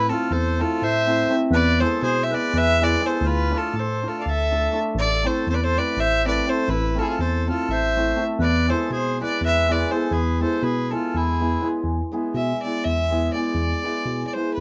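A clear, nasal fiddle carries the melody from the start over a reedy, close-miked accordion second line and a worn, lightly overdriven tine electric piano playing the bass, with a bright, shimmering hammered dulcimer joining as accompaniment at 0.1 seconds. This bittersweet, virtuosic Balkan wedding-band cut runs at 244 BPM in a straight 7/8 in E phrygian dominant, moving through Am, E and Dm under light reverb. The accordion drops out at 11.7 seconds, and the earthy, up-front fiddle takes a solo from 11.8 seconds until the cut ends at 14.6 seconds.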